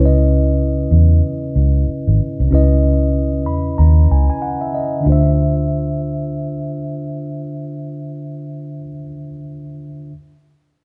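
Heard through a moderate stone-room reverb with a dulled top end, as if the band were playing live together, this introspective, late-night R&B and neo-soul fragment pairs a mellow, clean tine electric piano, which adds a fill from 3.1 to 5.1 seconds leading into the harmony's move from C#m9 to Dm9, with a dark, round, foam-muted fingered electric bass that sits up front until it drops out at 8.8 seconds.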